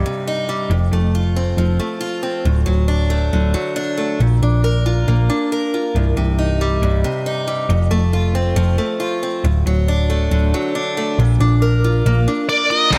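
A straight 4/4 pulse at 137 BPM drives this dark, angsty quiet-loud alternative rock excerpt, where a bright, boxy parlour acoustic guitar with finger squeak and slapback echo picks arpeggios over a round hollow-body bass through a Cm, F, D, Bb progression until about 12.9 seconds. An octave-fuzz lead slips in at around 12.5 seconds, and then a biting overdriven riff, a thick fuzz guitar, a barely audible string-machine cello pad and a gritty, punchy garage drum kit with kick and crash burst in just as the clip ends.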